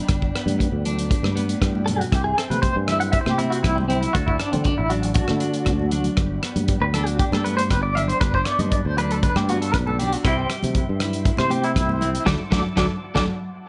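Sunny and carefree, this 118 BPM highlife guitar band groove in G major rides a straight 4/4 feel, with a fat-snared, tight-kicked soul drum kit up front, a growly, punchy fretless bass, and high-tuned congas sitting distant in the background. A twangy, compressed clean electric guitar plays accompaniment up front, while from 1.9 seconds a second clean guitar's arpeggio line shimmers with tremolo and tape echo alongside a soft, flute-like tonewheel organ turning through a slow rotary speaker with chorus vibrato and key click. A drum fill at 5.7 seconds and a band accent at 12.3 seconds mark the G, C and D progression in this short cut with light reverb and a rolled-off top.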